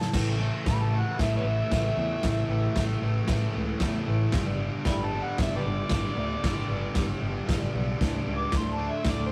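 Garage rock with a rowdy, swaggering strut, this short cut from a longer piece pairs an amplified, overdriven harmonica lead, full of tongue slaps, scooped notes and tape echo, with a double-tracked fuzz guitar riff and a growling fingered bass pushed into overdrive. The raw acoustic drum kit sits up front with a boomy kick, medium-tuned snare and crash cymbal, its saturated, gritty sound carrying a rolled-off top and a pumping small-room feel. The whole band is captured as a rough rehearsal-room recording in a modest room, moving through A5, G5 and D5 power chords.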